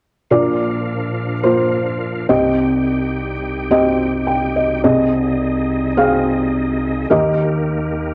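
A felt-muted upright piano and a bright tonewheel organ enter together at 0.3 s in this anthemic pop excerpt at 106 BPM, swinging lightly in 4/4 over a Bb mixolydian progression moving through Bb, Cm, Ab/C and Eb. The dark, intimate piano sits up front with thick felt and short sustain, adding a fill between 4.0 and 4.8 s, while the reedy organ holds sustained chords further back, colored by chorus vibrato, key click and a fast rotary speaker. A large studio reverb and small room ambience surround the parts, and the worn cassette-tape sound gives everything a warbling pitch drift.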